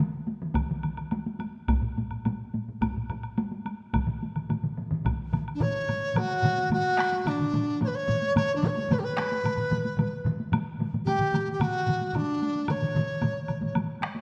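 Japanese traditional taiko drum ensemble music, ceremonial and driving, in a straight 4/4 at 109 BPM that keeps speeding up throughout this short cut from a longer piece. Several layers of taiko run through the cut, one of them joining at 1.7 seconds, some struck with hard sticks and others with heavy sticks, heard variously in a small room, a live room and close and dry, while a woody, dry woodblock sits beneath them. One hard-stick taiko layer drops out at 5.2 seconds, and at 5.5 seconds a mellow large dizi enters with the melody in F# miyako bushi, ranging from D4 to C#5. Its bamboo tone is airy with a buzzing membrane, tongued and shaded with vibrato, sounding both distant and up front. A moderate scoring-stage reverb of about 2.0 seconds lends the ensemble a ceremonial sense of space as the music moves into a new section at 6.2 seconds.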